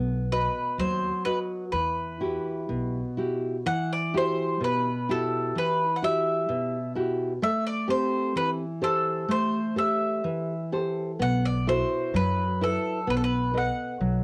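A bright, up-front bowl-back mandolin picks the melody on double strings from 0.3 seconds, over full-bodied fingerpicked nylon-string guitar and woody pizzicato upright bass that drops out at 3.0 seconds and returns at 11.2 seconds, in this mournful, passionate fado-style ballad excerpt with a rubato feel, where a wet small room and cassette tape color the home recording as the chords move from Emadd9 through Am7 to B7.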